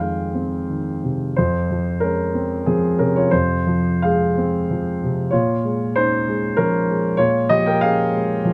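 A dark, mellow grand piano sits up front and carries this short solo fragment alone, spanning F2 to G5 across its 8.5 seconds. The style is neoclassical minimalist piano in F minor, moving in 3/4 with a rubato feel that lets the tempo drift between 84 and 98 BPM. The mood is wistful and reflective, with harmony that opens on Fm7, settles onto Fm at 1.4 seconds, and turns to Bbm7 at 5.3 seconds. Close, detailed microphones and little reverb give the instrument an intimate, dry presence. Cut from a longer piece, the passage feels like a brief glimpse into a larger musical thought.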